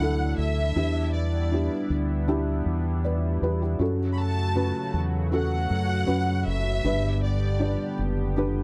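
A pop ballad at 79 BPM in 4/4 with a straight feel, this short cut from a longer piece carries a heartfelt, hopeful mood. A rich studio violin section carries the melody with smooth, lush vibrato, bowing until 7.9 s. Beneath it, a felt-muted upright piano supplies soft, intimate accompaniment, its short sustain and audible action noise giving it a close, natural character. A chorused pulse-width pad holds sustained chords with a shimmering, retro glow and a slow attack, while a fingered electric bass sits up front with a round, punchy, dark tone. The harmony moves from Dadd9 through Em7 and F#m to G, all within a dry, close 1970s-style studio sound with little reverb.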